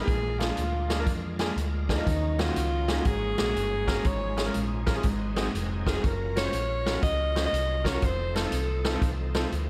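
A swung eighth-note groove at 121 BPM in 4/4 drives this jubilant, hopeful slice of uptempo gospel, cut from a longer piece and tuned slightly under concert pitch. The big-band drum kit sits up front with a natural big-room sound, its hi-hat, medium-tuned snare and punchy kick entering at 0.1 seconds alongside a fingered electric bass whose envelope filter gives it an amped, warm, punchy bite. A breathy alto saxophone carries the melody from the very start, close-miked and intimate with a soft, whispered attack in a pop-leaning solo voice. Beneath it, a baby grand piano accompanies with a clear, natural tone in which the action noise of the instrument can be heard, while a bright, shouting tonewheel organ holds sustained chords in the background through a slow rotary speaker and chorus vibrato. The harmony moves from Bb7 through Ebm7, Ab9sus4 and Gbmaj7 before landing on F7 at 8.0 seconds, all wrapped in a light reverb.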